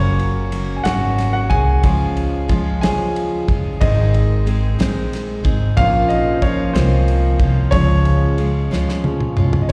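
Swaying and tender, this six-eight pop ballad excerpt from a live gig heard through the venue's PA is led by an intimate concert grand piano that takes a solo throughout, polished and present with deep bass, long sustain, audible action noise and a slapback echo. A full-bodied jumbo steel-string acoustic guitar picks arpeggios beneath it, while a woody, thumpy pizzicato upright bass sits up front. A damped 70s drum kit, dry with dark cymbals and a tight kick, enters at 0.2 seconds and closes with a fill from 8.7 seconds, all set in the gentle reverb of a recital hall.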